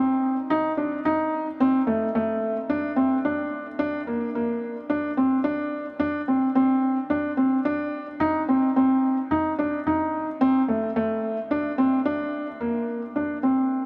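Electronica at 109 BPM in a straight 4/4, this short excerpt features a lone felt-muted upright piano playing a solo line in a narrow middle range, its soft, mellow tone carrying short sustain and a thin felt touch placed up front. A huge ambient reverb with a long 7.6 s tail surrounds the recording, giving the intimate, moving mood a spacious backdrop. The piano plays throughout, with a brief change of section arriving at 12.6 s before the clip ends.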